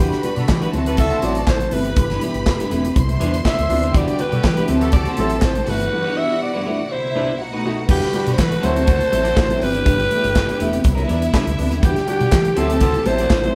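A straight 4/4 disco groove at 122 BPM drives this glamorous excerpt, where a raspy, gritty alto saxophone solos up front for the first 7.9 seconds over punchy kick, snare, hi-hat, handclaps and crash from a modern drum kit, a dark, round hollow-body fingered bass, very quiet ringing congas, a clean picked electric guitar and a baby grand piano with short sustain, while a clear, focused string section carries a second line above lush background string chords, punchy horn stabs hit at 0.2 and 4.2 seconds, and the band plays live in a large studio room through Em9, D9, G6 and Cmaj9 changes with a break that closes on a B7 turnaround.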